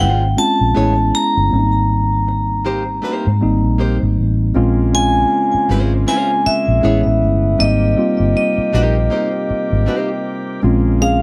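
This late-night, soulful R&B and neo-soul excerpt has a lazy swung sixteenth-note lilt, with a ringing, metallic hard-mallet vibraphone carrying the melody up front, its slow motor vibrato set in a boxy small room. Beneath it, a worn, slightly out-of-tune tine electric piano comps cleanly, a fingerpicked nylon-string guitar adds a full-bodied second line until 10.1 seconds, and a dark, foam-muted, punchy vintage electric bass sits round and prominent. At 4.6 seconds, a nasal pipe organ cornet stop with chiff and tremulant enters quietly with sustained baroque-voiced chords as the harmony cycles through lush minor and major ninth chords.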